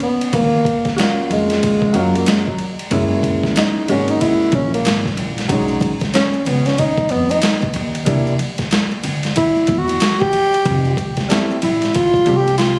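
Heard as if on a phone in a smoky club, this excerpt carries vinyl crackle and a roomy reverb that set a nocturnal jazz-hop mood at 93 BPM, with a swung 16th-note feel in 4/4. A breathy tenor saxophone solos from 0.0 seconds, up front and close-miked, its dark subtone, vibrato, soft attacks and scooped notes giving the line a whispered, intimate quality. Underneath, a compressed, gritty boom bap kit sits forward in the mix, with a thumpy kick, a medium-tuned snare, hi-hat and ride, all re-recorded in a large room. A pizzicato upright bass adds a woody, steel-string bottom, while a mellow, dark upright piano enters at 1.0 seconds with long sustain as the harmony moves from a rootless D#m9 through F#7, B69 and C9 to F. From 5.5 seconds, very quiet maracas and congas add close, dry hand percussion beneath the groove.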